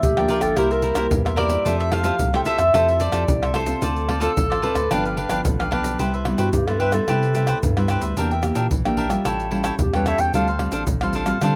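A woody, mellow mandolin carries the melody in this festive, playful samba and choro excerpt in C major at 110 BPM, and it drops out at 5.7 seconds. A dark, smooth-topped clarinet with slapback echo adds a brief second line at the start, then returns at 6.4 seconds for a classical-style solo over the second half. Underneath, a full-bodied, fingerpicked nylon-string guitar with audible finger squeak, a crisp cavaquinho with its own slapback echo, a round sine-like sub bass, and egg shaker, tight surdo, pandeiro and tamborim played with soft hands keep the groove going in a dry, open-air sound.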